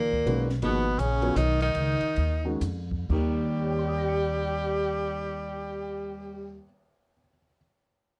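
Hypnotic and spiritual, this brief modal jazz fragment in Eb mixolydian sways in a swung 3/4 at 116 to 166 BPM, slowing between 0.6 and 3.1 seconds as a Db9sus4 chord resolves to Eb at 3.1 seconds. A bright tenor saxophone with vibrato and scooped notes carries the melody up front, a clear tenor saxophone with light vibrato plays a second line beneath it, and a woody pizzicato upright bass sits forward in the mix. A compact cocktail drum kit sits low in the mix, its high-tuned snare and punchy kick joined by hi-hat, ride, crash and cymbal swells, while a mellow, intimate baby grand piano with audible action noise and short sustain accompanies, framed by a dark production with light reverb.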